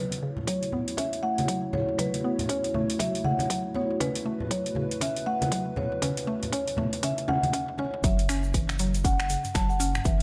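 Warm and driving, this afro house excerpt builds over a drum fill and a filter sweep on the woody, mellow synth pluck arpeggios, as a mid-forward marimba melody with digital delay floats above a moody, detuned pad, distant low-tuned congas, a punchy electronic kick from 0.5 s and a drum kit of snaps, metallic hats and toms, until the drop at 8.0 s brings in a round, deep analog bass with sidechain pumping and a grainy tube shaker in the background.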